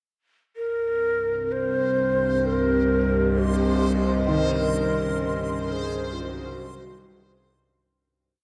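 A breathy, hollow shakuhachi opens this ominous dark ambient drone piece in free time at 0.6 s, carrying a free melody up front through shimmer reverb and delay; at 1.4 s it is joined by a tense, detuned, string-like bowed drone and a moody analog pad with chorus, followed at 1.7 s by a reversed, granular texture holding a bright high note, while a dark baby grand piano loops arpeggios in the background from 4.3 s as the harmony moves from C minor to E-flat minor seventh and the desolate scene fades within a vast, echoing cathedral space.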